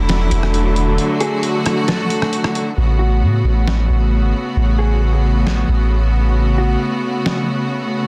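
A clear, bowed string ensemble opens on sustained chords with a light vibrato and a biting, earthy edge, sitting up front yet sounding distant, while a deep, round 808-style bass with a fast attack and dark decay lands beneath it. This is dreamy, floating cloud-rap in a half-time feel, set in a digital ambience and finished with a dense, heavily limited modern master. A gritty, pitched-down sampler-style kit brings in hi-hat, rim click and a medium-tuned snare with a compressed, tape-colored character, and its kick drops out between 1.0 and 2.8 seconds. From 1.2 seconds a mellow, clean electric guitar plays a fingered melody in the background, its dark tone trailed by digital delay. The harmony moves from E9sus4 to A69 at 2.8 seconds, and the strings carry on alone after the other parts fall away, as this cut from a longer piece closes.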